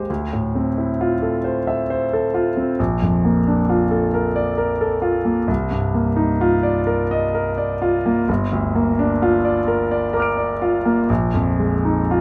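Impressionist classical solo piano, luminous and hazy, moving at a slow 44 BPM in 6/8 with uneven beats and free rubato, tuned slightly above standard at A4 = 441 Hz. A clear grand piano, intimate, natural and up front with audible action noise, spans a range from G1 to D7 in light reverb, drifting through Dm9, Bbmaj7, Cm11 and Gm7 before settling on a Bb7sus4 at 11.1 seconds. This short passage is cut from a longer piece.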